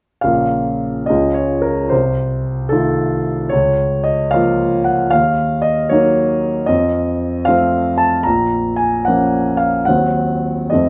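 A warm concert grand piano begins at 0.2 s, alone throughout this short cut from a longer romantic character piece in Bb minor. The mood is bittersweet and passionate, set in 6/8 with a flexible rubato pulse of roughly 68-77 BPM counted in dotted quarters, and the instrument is tuned to A4 = 439 Hz. The playing spans Bb1 to Bb5, giving the sound a deep bass beneath an open, up-front tone. The harmony moves from Bbm through Db, F7/C and Bbm/Db to Ebm7 and F7, returns to Bbm at 8.3 s, and arrives at Cdim/Eb before the passage ends at 10.9 s. A moderate large-studio reverb, with a decay of 0.7 s, surrounds the piano.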